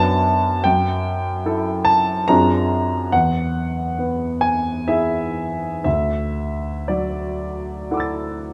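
In a rubato 3/4 at roughly 56-74 BPM, this short impressionist solo piano excerpt in D mixolydian drifts through luminous, serene harmony, moving from Bmadd9/F# and F#m7 through Bb9/F# and Eadd9 before settling on Dadd9 at 5.8 seconds. The grand piano is clear, present and up front, ranging from D2 to A6, while a moderate recital-hall reverb and a dark, warm production soften its glow.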